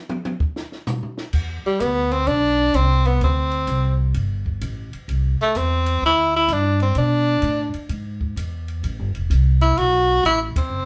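Small-group swing and bop jazz in E minor at 128 BPM, late-night and smoky, cut from a longer piece: a compact cocktail drum kit with dark cymbals, a high-tuned snare and a punchy kick plays alone for the first 1.3 seconds before a woody, pizzicato upright bass enters up front. At 1.7 seconds a clear tenor saxophone takes the solo melody with light vibrato, a soft attack and scooped notes, moving through suspended and added-tone chords toward an Am9. The band plays live in one room with moderate studio reverb and lands a shared accent at 10.5 seconds.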